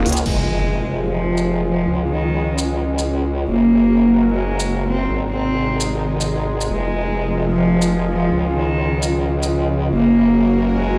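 A swung, half-time 4/4 groove at 149 BPM drives this aggressive, chaotic stretch of heavy wobble dubstep in F phrygian: a nasal, reedy bowed cello carries a dark melody up front over a saturated, formant-swept wobble bass, a lush detuned supersaw pad with phaser and a filter sweep from 0.3 seconds, a lo-fi, nostalgic tape-like pad in the background, crisp layered electronic drums with crash, hi-hat and shaker that stop at 9.5 seconds, and an electronic impact at 0.3 seconds, over a progression of Fm, Db, Gb and Ab in a big bare room with large studio reverb.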